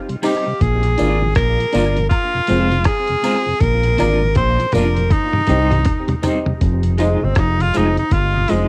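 A lightly reverberant home cassette recording captures this meditative, hypnotic roots reggae fragment at 80 BPM in F dorian, swung on the sixteenths. Gritty sampler-style drums with a thumpy kick and a drum fill from 3.6 to 6.6 seconds sit over a round, punchy fingered bass that enters at 0.6 seconds. A flute-like tonewheel organ on slow rotary speaker and a clean electric guitar with tremolo and dub echo sit in the background, joined by boxy upright piano stabs and a dry tambourine and woodblock. Up front, a close-miked tenor saxophone with vibrato and dub echo carries the melody, then takes a solo from 6.6 seconds as the chords move from Cm through Bb to Fm7.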